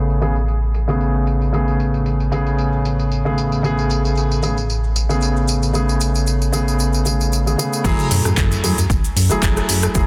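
A lightly swung sixteenth-note groove in 4/4 drives this groovy, cosmic nu-disco fragment, cut from a longer piece. An overdriven pop drum kit with metallic hi-hats, handclaps, rim clicks, tambourine and crash cymbal sets the pulse, while a cabasa sits in the background. Underneath, a retro, glossy chorused synth bass built from pulse and sawtooth waves evolves over Amaj9 harmony. A dark, mellow grand piano with audible action noise sits up front, its vintage tone colored by analog delay, as a filter sweep runs through the opening stretch. At 7.8 seconds the track drops onto F#m9, where a punchy, overdriven electronic kick enters alongside an impact and a sub drop in the background. The sound is dense and heavily limited with light reverb and a low-pass filter over the master.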